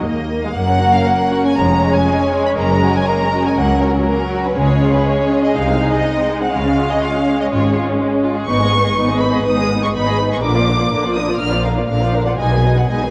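A quick, restless and dramatic classical-period string orchestra passage, cut from a longer piece, opens with every section together: an up-front, focused violin section sings the melody with vibrato over a second violin line, a smooth, even viola section supplies lush accompaniment, an expressive cello section with portamento sits in the background, and a close double bass section anchors the bowed rubato playing, all within a wet concert hall reverb and coloured by worn, warbling cassette tape pitch drift.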